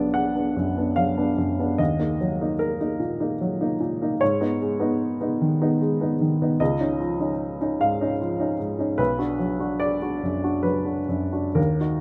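Lightly reverberant and close, this 12-second neoclassical minimalist piece sets a solo upright piano, woody and up front with short sustain, in an intimate, wistful mood, unfolding with rubato at 75 BPM in 3/4 across a range from B1 to F#5, tuned to A4 = 438 Hz, and moving from Bm through D#m, G#m and C#add9 before returning to Bm.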